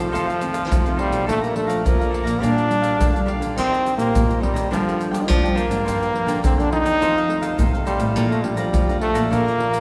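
Samba and choro in Bb major at 105 BPM in 4/4: a playful, festive fragment where a brilliant, punchy trombone leads up front with forceful jazz-style phrasing, scooped notes and light vibrato over a progression that moves from F7 through Bbmaj7, Eb6 and Gm7 and comes back to Bbmaj7. Behind it a crisp picked cavaquinho and a classical-sounding nylon-string guitar sit in the background, while a second, dark nylon-string guitar thumb-plucks the bass line. From 0.2 seconds a deep surdo, pandeiro and egg shaker play up front with a small-room feel, and the whole ensemble rings in the long, wet reverb of a church or concert hall.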